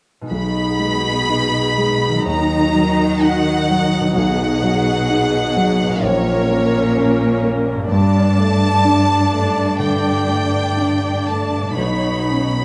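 Moving in a rubato 4/4 at around 63 BPM, this cinematic, emotional film score for orchestra unfolds with an uplifting, tender mood in a short passage cut from a longer piece. A bright, ringing concert harp opens at 0.2 s with fingerpicked arpeggios set in the background, and at 0.3 s the rest of the ensemble enters together. The violin section carries the melody up front, its bowed tone smooth and even with vibrato, while a polished grand piano supplies present accompaniment beneath it. An expressive viola section adds bowed inner support, and a focused, clear cello section holds the bass with vibrato. The harmony drifts through B6, D#m, A#m and Gsus2 before settling on Badd9 at 11.8 s, all captured with close, detailed microphones in a moderate scoring stage reverb.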